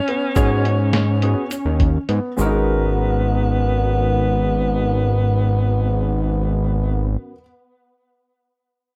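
An alto saxophone opens this short cut from a longer progressive instrumental, playing a smooth, jazz-styled second line with vibrato and scooped notes, carried on a touch of delay. Set in G# minor over a G#m11 chord, the band moves in a straight 7/8 at 209 BPM, counted in eighths, with an intricate, tense mood. A warm baby grand piano plays arpeggios in the background, while a bright, barky tine electric piano with subtle chorus adds clean accompaniment behind it. Up front, a thick, detuned sawtooth analog bass with a fast attack and filter sweep holds sustained low notes, joined at first by a compressed, pitched-down sampler-style drum kit with a thumpy kick and fat snare, plus a grainy tube shaker recorded in a small room. The drums drop out at 2.2 seconds and the shaker at 2.6 seconds, around the time the music moves into a new section, leaving the saxophone, keyboards and bass under a light reverb.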